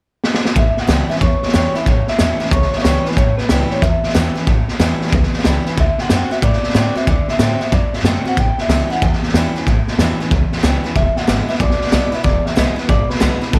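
Retro and rowdy, this rockabilly excerpt swings at 185 BPM in A mixolydian, opening with a quick drum fill from a gritty, punchy garage kit before a twangy, slightly broken-up electric guitar carries the melody through analog delay over a full-bodied picked steel-string acoustic guitar and a woody, thumpy upright bass, moving from A7 to D7 at 5.8 seconds and reaching E7 at 11.0 seconds.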